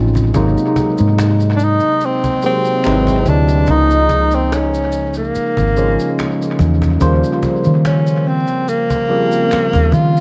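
A lightly swung 72 BPM groove in 4/4, built on a woody cajon in the background and vintage, band-limited maracas and finger snaps, carries this late-night, introspective R&B and neo-soul excerpt, where a round, punchy hollow-body short-scale bass and a barky, lightly overdriven tine electric piano with phaser and analog delay sit up front over Ab7, Db69 and Eb13 changes, and from 1.6 s a breathy, whispered tenor saxophone with vibrato and scooped notes plays an intimate jazz solo amid light reverb, heavy echo and vinyl crackle.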